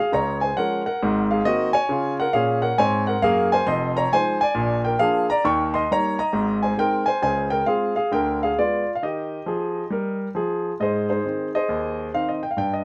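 A swung 4/4 pulse at 135 BPM drives this short stride piano passage, a playful, exuberant fragment cut from a longer jazz performance. A single grand piano carries everything from 0.0 to 12.8 seconds, ranging from a low F1 up to Db6, its tone intimate and natural, with the mechanical action audible close up. The music opens in Db major before settling into Ab major from 3.7 seconds, moving through Fm7, Bb7 and Eb7, then Dbmaj7 and a Ddim7 before resolving toward Ab. A new section begins at 10.8 seconds on an Ab chord and runs to the end. The piano sits up front in a moderate studio reverb, giving the sense of a live player in a single room.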